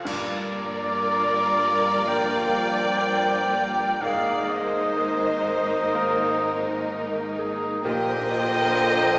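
A distant, roomy solo oboe carries a second line over the lush, vibrato-rich violin melody in this hopeful, moving cinematic score fragment at a rubato 62 BPM, while a pure-toned flute group and a soft-attack second violin line add further counterlines. Beneath them an intense viola section, smooth cellos, focused double basses, very quiet mellow French horns and a brilliant background grand piano with audible action noise move through Gm7, Absus2 and Bbadd9. Dark clash cymbals and concert bass drum mark the opening until 2.0 seconds, and a dark solo clarinet joins at 2.1 seconds, all within a reverberant church or concert-hall space heard through a small speaker.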